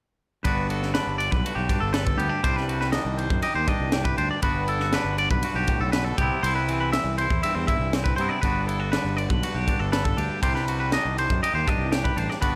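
At 0.4 seconds the whole band enters together at 120 BPM in G major: a bright, picked, clean electric guitar plays accompaniment while a second twangy guitar, warm and fingered, spins high arpeggios through spring reverb. Underneath, a growly, fuzz-overdriven fingered bass and a crisp, gritty fusion kit in a small pumping room, with a high-tuned snare, punchy kick and ride cymbal sitting up front, drive the straight 4/4 feel. This intricate, wistful math rock and midwest emo passage, cut from a longer piece and recorded fairly dry, sways between Gmaj7 and Cmadd9 with a brief turn to Cmaj7.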